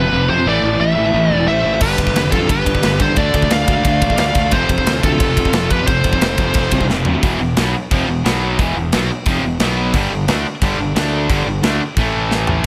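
Dark and relentless, this heavy metal piece drives at 177 BPM in E phrygian. It opens with a high-gain lead guitar melody up front over three bright rhythm guitars, one overdriven and two distorted, riffing in the background, plus a growly, punchy fuzz fingered bass, and a quieter second lead line soon joins. A tight, polished drum kit with an airy, big-room sound enters at 1.8 seconds; the leads drop out around 6.8 seconds, and after a drum fill the riffs shift to power chords at 7.2 seconds, all set in a small room ambience.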